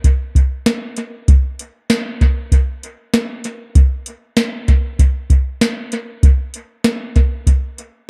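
Dream pop excerpt at 97 BPM in a straight 4/4, floating and ethereal, carried by a soft vintage rhythm box whose deep kick, tonal snare and metallic hats sit up front with a tape-warm analog character and dub echo from 0.0 to 7.9 seconds, all set in light digital reverb within an echo-heavy mix.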